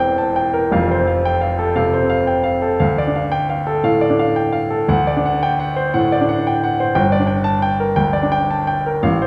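Rubato phrasing in 4/4 stretches and pulls against a pulse of about 115 BPM in this romantic character piece for solo piano, a 9.3-second passage taken from a longer work. The mood is lyrical and hopeful, with the harmony moving from C7 over E to F, then through Dm and D7 before settling on Gm. A single grand piano carries everything, its warm, polished tone reaching from a deep E1 up to A5. The instrument sounds present and up front, while a lush recital-hall reverb with a 1.7-second decay places the listener further back in the room. The result is an intimate yet spacious classical excerpt that feels suspended in a generous acoustic.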